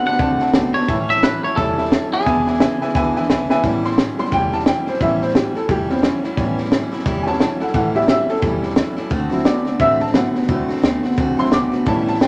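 A swung 175 BPM rockabilly tune in A mixolydian opens with a bright, compressed twangy electric guitar melody that stops at 3.3 seconds, after which a drum fill at 3.5 seconds launches a clear, slightly detuned upright piano solo from 3.6 seconds, all over a picked acoustic guitar in the background, a slightly broken-up electric guitar riff from a small old amp, thumpy gut-string upright bass and a compact cocktail drum kit with a high-tuned snare, in a retro, rollicking excerpt cut from a longer piece and bathed in wet club reverb.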